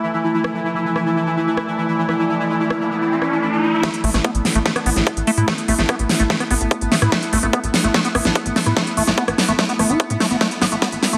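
Psychedelic trance with an alien, intense mood, where a pulsing gated texture holds sustained chords alongside an airy, breathy pad under crisp hats and a huge snare, a riser builds from 2.0 to 3.8 seconds, and then a punchy kick and a squelchy, resonant acid bass with dub echo and 12-bit grit arrive at 3.8 seconds, joined by a tight sequencer bass at 4.0 seconds, as a filter sweep drives the build-up.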